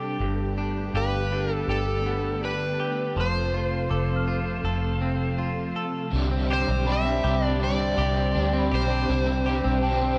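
Blissful and ethereal, this dream pop excerpt drifts at 81 BPM in a straight 4/4, moving from Gadd9 to F and then settling on Csus2 at 6.1 seconds. A vintage, warbling organ-string ensemble holds mellow, soft-attack chords under ensemble chorus, while a bright, twangy clean electric guitar picks arpeggios through subtle chorus and analog delay. A dark, round, foam-muted fingered bass sits up front with tube saturation, and from 1.0 seconds an overdriven slide guitar carries the melody with a warm, fingered tone and analog delay. A delicate, bell-like celesta with soft felt hammers rings in the background in a high register, also treated with analog delay. At 6.1 seconds a crunchy overdriven guitar joins with picked accompaniment colored by tremolo and ensemble chorus, all set in light reverb with a dry, gritty hardware character.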